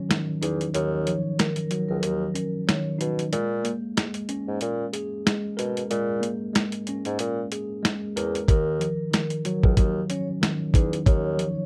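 A swung boom-bap groove at 93 BPM in 4/4 drives this moody, gritty hip-hop excerpt in Eb minor, built on a dusty, sampler-style drum kit whose thumpy kick, medium-tuned snare and hi-hat sit up front, compressed and overdriven. A worn, slightly out-of-tune tine electric piano carries the accompaniment through Ebm9 and Bbm7 chords, its tone filtered and given a cassette-tape character. Underneath, a dark bassoon plays the bass line in a classical style, with a light vibrato and a roomy, distant quality. A mellow vibraphone with soft mallets adds a ringing, metallic, airy melody with medium motor vibrato, heard from 0.7 to 3.0 seconds and returning at 8.5 seconds, also filtered. Light reverb and a dark, warm production tie the parts together.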